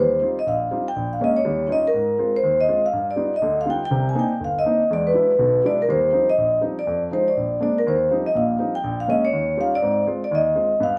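Relaxed and sophisticated, this brisk jazz excerpt swings at 244 BPM in Eb major, with a vibraphone played with medium mallets and the motor off carrying the melody in a metallic, ringing tone that sits up front with a boxy small-room character. A warm grand piano accompanies from start to finish beneath it, moving through lush harmonies such as Eb69, Bbm7, G7b13 and Cm9. The phrase begins again at 7.9 s, and the whole recording is bathed in a wet studio reverb.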